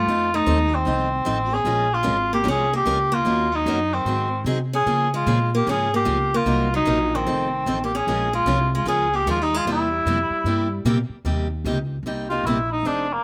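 A lilting 4/4 swing drives this virtuosic, acoustic string-swing passage in the jazz manouche style, cut from a longer piece and played outdoors with almost dry sound. A mellow, distant cor anglais carries the melody with light vibrato and a classical touch over two bright, boxy parlour steel-string guitars, one picked in a second line until 10.8 s and the other picking the chords up front with audible finger squeak, both sharing the horn's slapback echo. A woody, thumpy pizzicato upright bass anchors the bottom as the cor anglais breaks into a solo at 11.3 s.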